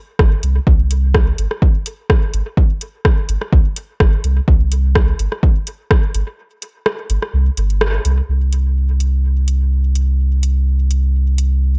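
Swung sixteenths in 4/4 drive this hazy, nocturnal dub techno passage, cut from a longer piece, where a punchy, layered electronic kick sits up front until 6.0 s alongside an analog rhythm box of metallic hi-hats and rim clicks trailing dub echo, while a deep, round sub bass pumps with sidechain movement through a dark digital ambience, before a break arrives at 6.4 s with a band accent at 7.8 s.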